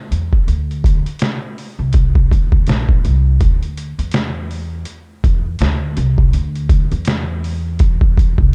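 A dark, dry production frames this short cut of nocturnal, cool jazz-hop, with a swung sixteenth-note feel. Both parts play throughout: a trip hop sampler-style drum kit, compressed, pitched down and gritty, sits up front with a thumpy kick, a medium-tuned snare and hi-hat, its sound re-recorded in a large room. Beneath it, a woody upright bass with steel strings plays pizzicato in a low register, also up front and sounding acoustic and warm.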